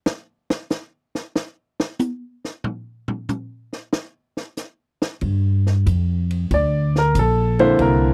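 A compact cocktail drum kit opens this sophisticated, relaxed jazz piano trio fragment, playing alone from 0.1 seconds with hi-hat, kick, snare, toms and ride cymbal in a swung 4/4. The kit sounds dry and natural, with dark cymbals, a high-tuned snare and a tight kick sitting up front. At 5.2 seconds a woody, pizzicato upright bass with steel strings enters on a Gm7 chord, its low notes close and present. The grand piano arrives at 6.5 seconds, carrying the melody with a warm, natural tone. The whole piece has the intimate, close feel of a 1970s studio session, with little reverb around the instruments, and it is cut from a longer performance.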